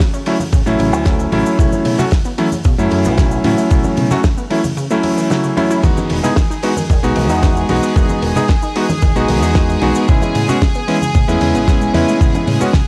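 Nu-disco at 113 BPM in E major, this feel-good, groovy excerpt rides a gritty, thumpy electronic kick up front (dropping out from 4.8 to 5.8 s) alongside a dry 70s kit with a fat snare, cabasa, hi-hat and cymbals, soft low-tuned congas in the background, a bright envelope-filtered fingered bass with tube saturation, a clangy vintage electric grand piano with analog delay, a detuned, warbling sawtooth pluck playing arpeggios through tape echo, and a rich, floating string section holding chords from 5.8 s, all in a small, lightly reverberant room with a cassette-recorded, sidechain-pumping character.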